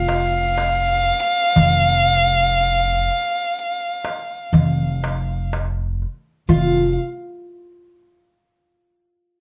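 A rich, bowed violin sings the stately, festive melody up front with vibrato, portamento and a soft attack, over a plectrum-plucked fretless oud with woody double strings, a pizzicato upright bass on steel strings, and a crisp, metal-shelled darbuka, in this Arabic maqam ensemble excerpt at 122 BPM in a straight 10/8, captured with close, detailed microphones and light reverb as a new section begins at 6.5 seconds.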